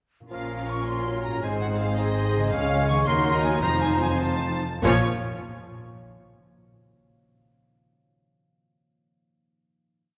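A dramatic, restless romantic orchestral piece in 6/8 with flexible rubato, opening with a mellow concert harp's thumb-plucked rolled chords at 0.2 s before the full orchestra joins a moment later. A clear, intense violin section carries the melody, doubled by an airy flute in unison and at the octave, while a very quiet tremolo violin section, lush tremolo violas, warm oboe and clarinet, a punchy bassoon and a dark, tight French horn section fill in sustained chords over smooth, even cellos and double basses. The music slows from 2.0 s until the final chord arrives at 4.8 s, and the ringing harp carries on alone until 6.0 s in a wet concert hall.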